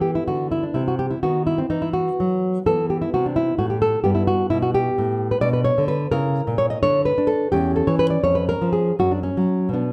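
A solo nylon-string guitar, warm and up front with audible finger squeak, plays a grave, introspective baroque-style classical dance in E minor and a rubato 6/8 at 78-88 BPM, spanning E2 to D#5 across this short 9.9-second passage, which is cut from a longer piece and set in a moderate recital-hall reverb.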